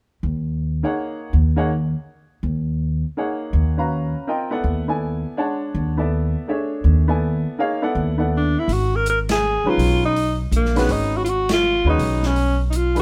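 A clear, punchy alto saxophone steps up front at 8.4 seconds, carrying a forceful jazz solo with light vibrato and a smooth top. This searching, hypnotic modal jazz passage swings in three, cut from a longer piece. A woody pizzicato upright bass on steel strings opens the music and holds the low end, and a bright, brilliant upright piano with short sustain joins almost at once to comp over suspended and minor eleventh harmonies. At 8.7 seconds, as the music moves into a new section, an airy, polished jazz kit arrives with dark cymbals on hi-hat and ride and a medium-tuned snare, sitting back in the mix. The band hits two accents together in this later stretch, and light reverb gives the sense of a group playing live in one room.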